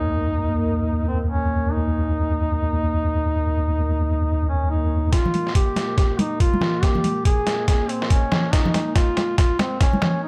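Riding a half-time deep dubstep pulse at 141 BPM in 4/4, with a 60% swing on the sixteenths, this brooding, meditative excerpt from a longer piece sits on an Eb chord before the chord drops out at 5.1 seconds. A distant, roomy duduk carries the folk-style solo melody up front from C4 to Ab4, its vibrato and scooped notes trailed by dub echo. Beneath it, a dark analog pad holds sustained chords from Bb3 to Bb4 in the background, its detuned square, sawtooth and triangle tones thickened by a sub octave, ring modulation and chorus, with slow attack and long release. For the opening 5.1 seconds a deep, wobbling triangle-and-sine bass holds Eb2 up front with fast attack and chorus. At 5.1 seconds a build-up and drum fill begin, as a gritty, thumpy, pitched-down electronic kick arrives up front alongside a tape-warm trip hop sampler-style kit whose hi-hat and medium-tuned snare are high-pass filtered, joined at 5.3 seconds by soft-handed acoustic congas in a small room. 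A light reverb glazes the whole mix.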